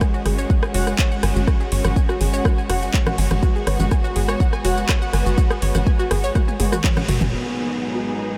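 A punchy, up-front electronic kick and a tight, dark sequencer bass open this melodic techno excerpt at 123 BPM in 4/4, joined at once by a filtered house kit of congas, handclaps, metallic hats, rim clicks, shaker and toms. Above them, a rich, smooth studio string section holds sustained chords through a low-pass filter, while a round, detuned analog pluck spins bright arpeggios through chorus and a diffuse ambient delay, with both strings and pluck pumping to the sidechain over an F#sus2 chord. Very quiet, brassy analog synth stabs enter at 0.7 seconds, lending a cinematic, driving edge. A drum fill from 6.4 seconds leads to a band accent and, at 7.3 seconds, a shift to G#m7, where a filter sweep moves across the pluck and a mellow, octave-layered lead with phaser and analog delay sits in the background on a single note. A warbly, lo-fi tape-like pad, a faint electronic downlifter and a tense, string-like drone with its own reverb fill out the closing moments, all soaked in a huge, dreamy ambient reverb.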